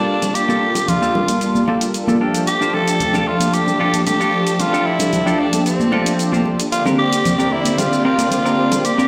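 A raspy tenor saxophone leads this short nu-disco excerpt up front, carrying a gritty, punchy pop-style melody with vibrato over a smooth, detuned sawtooth pad treated with chorus and a moving notch. Beneath them, a lush bowed string section sits in the background, its sustained chords colored by vibrato and portamento, while a clean, hollow-body semi-hollow electric guitar plays a fingered riff through lush chorus and a low-pass filter. At 0.2 seconds, layered electronic hi-hat and shaker with bright hats arrive in a small room reverb, joined by compressed, saturated bongos and congas played with soft hands. The harmony moves from Gm9 to F69 and then Bb69, giving the straight groove a sensual, sleek glide. The whole mix sounds as if played on a big sound system in a bare room, with a large studio reverb around it.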